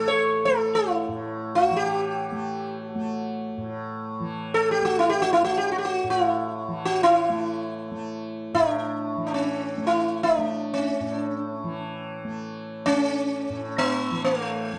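Devotional and radiant, this Hindustani classical passage unfolds in free time in raga Khamaj on A, tuned to A4 = 442 Hz. The sitar carries the melody throughout, sitting up front with a bright, buzzing, plectrum-plucked tone and the ring of its sympathetic strings. It spans A3 to C#5 and is dressed in plate reverb. Beneath it, the tanpura holds a mellow, softly plucked drone between A2 and A3 across the full 14.8 seconds, its shimmering resonance set well below the sitar. A moderate studio ambience gives a modest sense of room, and the production leans dark and warm. The music is cut from a longer performance, so it begins and ends mid-flow.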